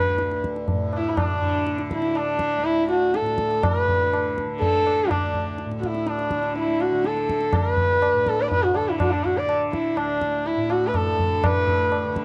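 A close, dry recording in a small room with the intimate feel of a 1970s studio opens this short cut from a longer Hindustani classical performance in raga bhupali, set in D at 123 BPM in a straight 4/4. A single bowed sarangi carries the melody up front, its tone dark and nasal with an airy bow, soft attacks, light vibrato and gliding portamento, while its sympathetic strings add resonance as it moves between D4 and D5. Beneath it, a tanpura sounds a mellow, softly plucked drone from D2 to D3, buzzing and shimmering at a lower level throughout. The tabla enters at 0.2 seconds, high-tuned and ringing, sitting close and dry in the mix. The mood is devotional and radiant, with all three parts sustained through to the cut at 12.2 seconds.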